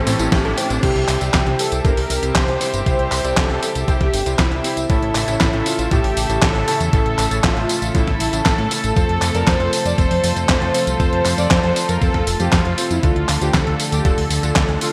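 Italo disco with a bittersweet, danceable pull, where a brief background riser and a warbly, dusty pluck arpeggio flicker through the opening moments as a bold, nasal analog synth brass lead with chorus and delay takes the melody over dark, floating bowed strings, a fat sawtooth bass, clangy electric grand piano stabs, a thumpy electronic kick and a clean 12-bit drum machine whose up-front snare, claps, hi-hat, tambourine and crash ring out through gated reverb, all set in a lush hall with bright 1980s-style digital sheen.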